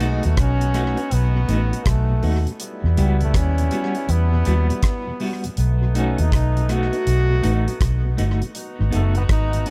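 A dark, round, foam-muted fingered bass sits up front in this warm, uplifting roots reggae excerpt, beneath a tight, dry 70s kit of kick, hi-hat and rim click, a hollow-bodied electric guitar with tremolo and tape echo, a very quiet organ turning on a slow rotary speaker, and a bright, distant trombone melody shadowed by a roomy horn section, both trailing tape echo over a swung groove that moves from B7 to Emadd9 and back before landing on G#m7.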